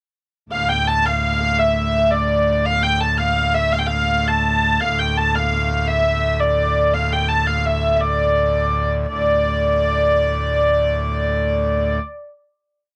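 A medieval dance in D minor and 6/8 at 112 beats per minute, with an ancient, mysterious mood. A warm, smooth wheel-bowed hurdy-gurdy carries an ornamented modal melody from 0.5 seconds, while a majestic, brilliant full pipe organ with mixtures holds a low drone beneath it. The close, dry studio sound carries light reverb, and the short dance section gives way to a final chord at 9.1 seconds.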